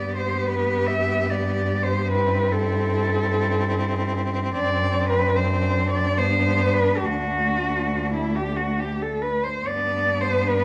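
A moderate large-studio reverb gives this 10.6-second excerpt for cello ensemble a spacious bloom. Tender and lyrical, the classical piece moves in a rubato 3/4 at 68-75 BPM in G major, with a warm, distant-sounding cello carrying the melody up front, bowed with expressive vibrato and portamento. Beneath it, two rich, focused cellos play a second line in the background and an accompaniment with a smooth top, while an up-front bass cello with a soft attack and expressive slides anchors the harmony from D2 to G2.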